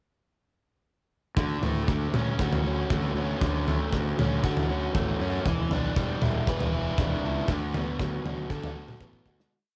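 A lo-fi home cassette recording in a small room carries this upbeat, jangly indie rock interlude, where a warm overdriven electric guitar plays picked arpeggios over Dmaj7, Em7 and Bm7/D, a growly fuzz-toned fingered bass drives eighth notes beneath it, and a loose acoustic drum kit with a tight kick, medium-tuned snare and grooving toms pumps in the room before a drum fill at 9.0 seconds closes the fade-out that begins at 7.5 seconds.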